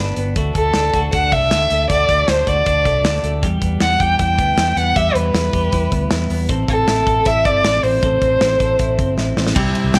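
Jangly indie pop with a bright, breezy mood: a dark, woody bowed violin carries the melody with vibrato over twangy, compressed twelve-string electric guitar arpeggios with slapback echo, a round, amped fingered bass, and a small-room drum kit with tight kick and crash, ride and hi-hat that joins at 0.2 seconds, moving through D, Em and Am chords in light reverb until a drum fill at 9.2 seconds, as a full-bodied picked jumbo acoustic guitar with finger squeak enters at 9.5 seconds.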